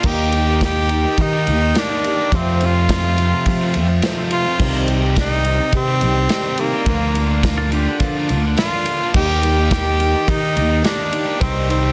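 Wistful and dusty, this folk rock and heartland rock excerpt moves at a straight 106 BPM in 4/4 over an Eb, F, Cm, Bb/D progression. An edgy tenor saxophone with light vibrato carries the melody up front, joined by a growly, amped fingered electric bass. Behind them sit a picked steel-string acoustic guitar, a double-tracked crunchy overdriven guitar riff, a very quiet baby grand piano with long sustain, a natural country drum kit with dark cymbals and a punchy kick, and a jingly tambourine from 0.6 s, while a bright, twangy pedal steel guitar adds a brief volume-swelled second line between 7.6 and 8.4 s, all in light reverb and small room ambience with a dense, heavily limited modern master.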